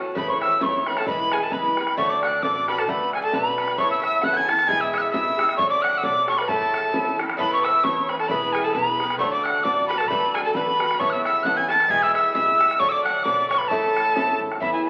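Celtic folk polka at 133 BPM in A major, lively and rollicking, with a breathy, bright metal whistle carrying the melody up front with chiff, vibrato and an unsteady tone, a dark, distant fiddle and a very quiet, woody mandolin as second lines, a picked, metallic Irish bouzouki on accompaniment, a growly pizzicato upright bass in the background and a damped, tight, band-limited bodhran, all steeped in large studio reverb and the crackle of a very old 78 rpm record.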